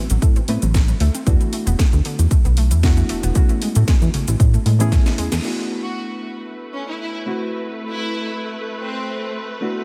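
A glossy, chorused synth bass sits up front with a punchy, layered electronic kick in this sunny, groovy nu-disco cut at 115 BPM with a light swing, joined by a house kit of cracking snare, hi-hat, cabasa and crash, a bright, detuned analog pluck playing arpeggios, and a reedy, worn, slightly out-of-tune electric piano carrying chords through lush chorus, pumping and tape echo. After a drum fill and a band accent, the kick drops out at 5.0 seconds, the bass and pluck stop at 5.4 seconds and the house kit falls away soon after. That leaves the piano beneath a woody, bowed string section with vintage sampler grit and a low-pass filter, while a focused violin section carries the melody from 5.8 seconds with tape echo. The harmony moves through Am6, E7sus4 and Amaj9 in a light digital ambience.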